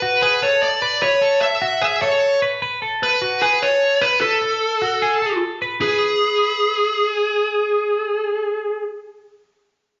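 A dark, smooth lead guitar with overdrive and a bright, twangy twelve-string electric guitar open this breezy indie pop passage together, both picked and sitting up front at a brisk 150 BPM in a straight 4/4. The clean, compressed twelve-string plays arpeggios in a narrow register over an F#madd11 chord, while the overdriven lead carries the melody a little higher and louder. At 5.8 seconds the harmony drops away as the music moves into a new section, and the twelve-string stops at 7.0 seconds, leaving the lead to ring on alone until 8.8 seconds. The sound is that of a band playing live in one large studio, drenched in lush reverb, with a rounded top end that softens the jangle. It is a short cut from a longer piece.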